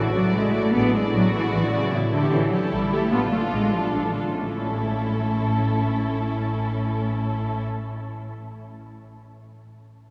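Quick classical-period orchestral music in 3/4 and A major, graceful and lively, moving at 140-153 BPM before slowing down from 1.3 to 4.4 seconds in this short section cut from a longer piece. Bowed strings play throughout, with vibrato: violins carry the melody while a more distant second violin line sits beneath, rich violas fill in the accompaniment, and an up-front cello section joins the double basses on the bass line. The harmony moves from D/A through E7/A, A7 and Dm/A to settle on A at 4.4 seconds, all bathed in a wet cathedral reverb.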